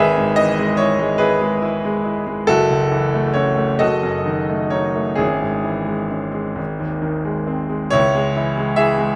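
A romantic classical character piece for solo piano in C# minor, this short passage cut from a longer work feels passionate and brooding, moving in a slow, rubato 6/8 at around 42-50 BPM. A bright baby grand piano plays alone throughout, its brilliant, open tone and long sustain sitting up front, ranging from F#1 to E5 through harmonies that pass from E/G# and F#m7 to a G# chord before settling on C#m at 8.0 seconds. Close, detailed microphones capture the instrument within a moderate recital hall reverb.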